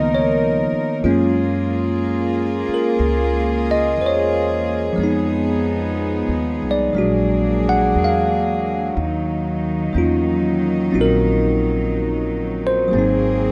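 A slow 4/4 pulse at 61 BPM sways with a swung eighth-note feel, setting the pace for this smoky, wistful jazz ballad, heard as a short piece cut from a longer performance. A bell-like tine electric piano carries the accompaniment up front, its tone bright and clean, moving through rich harmonies that open on Db13 and pass through Gbmaj9, Fm7b5 and Bb7b13 before settling on Ebm9 and turning to Ab9 near 12.9 seconds. Alongside it, a bowed cello section holds sustained chords with a soft attack, its pure, floating sound sitting close and clear. An upright bass plays pizzicato in the low register, woody and growly with the bite of steel strings. All three parts play together from the start to 13.5 seconds, and the studio ambience gives the whole a rough, home-demo character.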